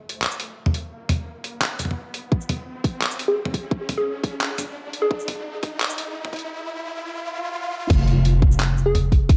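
Half-time drum and bass with a heavy, spacious mood, this short cut from a longer piece spends most of its length building toward a drop. Electronic riser and swell effects sit low under a gritty, pitched-down sampler-style drum kit of crash cymbal, handclaps, hi-hat, shaker and toms, while a tight, layered electronic kick joins at 2.3 seconds. A hollow, warbling square-wave pluck with chorus and delay enters at 3.3 seconds, its detuned, vintage tone carrying a filter sweep through the build-up. A swell at 7.2 seconds leads into the drop at 7.9 seconds, where an impact lands and a growling, buzzy 808-style bass takes the low end up front. The production is dark and warm, with light reverb and a digital ambience framing the sound.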